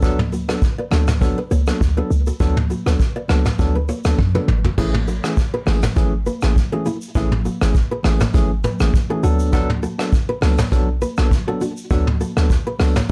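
A bell-like tine electric piano, a short, punchy 808-style bass and a vintage brush drum kit open this breezy, sunny afrobeats excerpt at 101 BPM in A major, with very quiet, high-tuned congas joining at 0.2 seconds and a small, fingerpicked nylon-string guitar riff with digital delay arriving at 0.3 seconds. The brushed kit sits up front with dark cymbals and a punchy kick, the bass is tight with a fast attack, and the electric piano stays bright and clean as the chords move from D6 to Amaj7. A drum fill at 4.2 seconds leads into the second section, all within a dark, warm production with light reverb.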